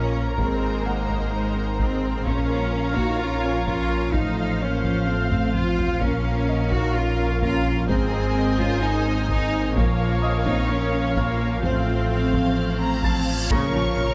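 Opening on lush, vibrato-rich violins and distant violas over an up-front, intense cello section, rich bowed double basses and a round sine sub bass, this tense, relentless hybrid orchestral and electronic film cue layers a silky detuned analog string pad, background French horns, a ringing harp-like synth pluck with tape echo and a faint, worn grand piano, while close, dry taiko drums drive from 0.4 seconds with a fill near 5.3 seconds, a reverse cymbal builds from 12.5 seconds, and an electronic impact lands at 13.5 seconds as a high violin melody and warm trombones enter on a final minor chord.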